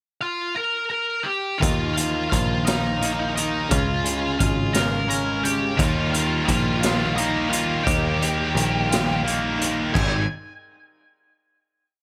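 Cathartic and bittersweet, this short quiet-loud alternative rock piece in 6/8 at 58 BPM opens with a dark octave-fuzz lead guitar playing a motif-based melody partly doubled in octaves, joined at 1.6 seconds by a gritty, boomy garage drum kit up front, a growly foam-muted picked bass locked to the kick drum, twangy clean arpeggios through tape echo, and a sludgy overdriven guitar ringing chords in the background, with a bright, scooped high-gain guitar adding its own ringing chords from 5.8 seconds before the band lands on an Abmaj7 final chord at 9.9 seconds in light reverb.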